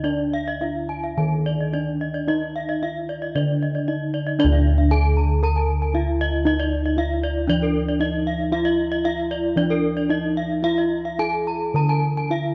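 A straight 4/4 pulse moving between 104 and 116 BPM drives this shimmering, ceremonial stretch of Balinese gamelan in D pelog, tuned to A4 = 438 Hz and cut from a longer piece. A bronze metallophone struck with a wooden mallet carries the melody between D4 and Bb4-40c, its paired tuning producing ringing, beating tones heard close and dry. Above it, a second bronze metallophone played with a horn mallet spins arpeggios from Bb4-40c up to Bb5-40c, sounding bright, airy and up front. Underneath, bossed gongs supply the bass from D2 to E4+50c with a round, beating, full presence that sits prominently forward. All three parts play throughout the 12.5 seconds, moving from an opening section into a new one at 4.4 seconds, under light reverb and a dark, warm production.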